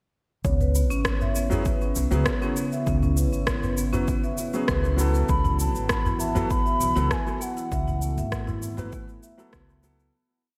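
Hypnotic and meditative, this whole organic downtempo piece moves at 99 BPM in C# minor over a single C#m7 groove, built on a dark, detuned analog pad with chorus and sidechain pumping, a medium-mallet marimba looping a 10-step arpeggio through tape echo that drifts against the bar, and a woody pizzicato upright bass playing a dub-style line with tube saturation. A punchy electronic kick, an overdriven shaker and rim click and a small udu in the background shape the beat beneath a ringing bronze singing bowl holding a high C#5, while a felt-muted upright piano enters at 1.5 s with syncopated quartal stabs, its action noise audible. A breathy bass bansuri sings arch-shaped motifs from 5.3 s through tape and slapback echo, and concert hall reverb lends a big arena sound as the piece fades out from 6.9 s.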